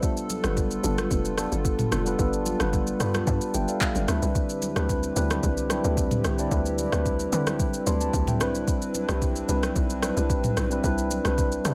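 Amapiano with a soulful, late-night mood, this short cut from a longer piece moves at a straight 111 BPM in 4/4. A mellow tine electric piano sits up front with a clean, direct tone and subtle chorus, voicing chords that move from G9 to D13sus4 and then Cmaj9, and it plays a fill from 2.7 to 4.4 seconds. Behind it, a hollow, flute-like pad holds sustained chords with a slow attack, chorus and sidechain pumping, staying in the background. The smooth R&B drum kit is electronic and overdriven, placed forward with a soft kick, handclaps, rim click, shaker and toms. A bouncy log drum bass enters at 0.4 seconds with a percussive FM tone that has a fast attack, a decaying tail and a noise layer, while very quiet acoustic congas with thick skins and hard hands add a compressed, saturated texture. The sound is dry, with little reverb.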